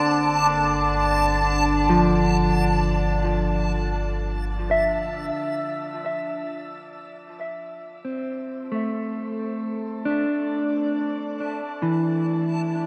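Reflective and melancholic, this ambient passage, cut from a longer piece, drifts at 67 BPM in 3/4 under a wet shimmer reverb with a long tail. It opens on a Gsus2 chord, with a deep, round sine sub bass holding G1 and an up-front drone of moving overtones, sawtooth and sine with chorus, ringing from D3 to D4 until about 5.5 seconds. Above them, a reversed, swelling texture with a granular, detuned triangle sound floats bright and dreamy at A5, falling away near 5.4 seconds and returning at 10.7 seconds. A mellow, dark, clean electric guitar enters at 1.9 seconds with fingered arpeggios through delay, ranging from E3 to E5 and sitting up front. From 5.4 seconds the guitar fades in over Amadd11, and the harmony settles on A5 at 10.7 seconds.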